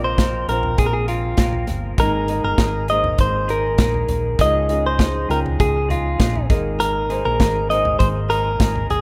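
An up-front, direct-recorded clean electric guitar carries the picked melody with spring reverb in this uplifting, hopeful piano-driven pop piece, over a dark, woody upright piano, a twangy twelve-string electric guitar riff in the background, a very quiet reedy tonewheel organ with key click holding sustained chords, a round hollow-body bass, and a punchy, airy drum kit that enters at 0.2 seconds, all in a rough home demo mix with light reverb.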